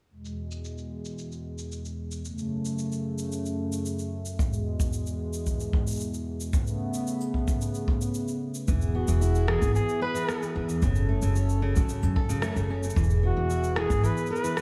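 Playful and hopeful, this short folktronica cut opens on a smooth, warbling analog pad with chorus, joined almost at once by a muffled electronic shaker and rim click, then a boomy, distant kick from 4.4 s. At 8.7 s a fingerpicked jumbo acoustic guitar adds arpeggios with tape echo while a woody, growly pizzicato upright bass comes in up front, and a close-miked flugelhorn with vibrato carries the melody with echo of its own. A lush hall reverb gives the whole piece a dreamy, soaked haze.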